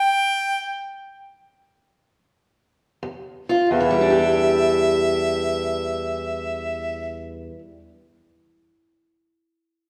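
Smoky and brooding, this acoustic country blues fragment in E minor drifts in free time, opening with a warm, up-front harmonica carrying the melody alone in a jazz style with light vibrato while the pace slows. At 3.0 seconds a dark, boxy parlour steel-string acoustic guitar enters, fingerpicked and up front, settling onto an Em7 at 3.7 seconds and ringing on until 7.9 seconds. A wet recital-hall reverb gives the duo the spacious air of a church or concert hall.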